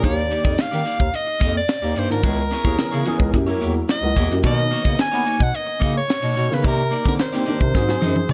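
Polished 1980s jazz-funk pop with an urban, bittersweet mood at 109 BPM, cut from a longer piece, where a bright, up-front soprano saxophone carries the melody with vibrato over a dark baby grand piano with audible action noise and ensemble chorus, a twangy, slightly broken-up electric guitar riff with subtle chorus, a mellow bass clarinet bass line with subtone and vibrato, and a tight, dry funk drum kit with a high-tuned snare, all in a small room, with chords moving from Ebmaj7 through Gb7b9 and Bmaj9 and arriving at Ab7 alongside a drum fill at 7.7 seconds.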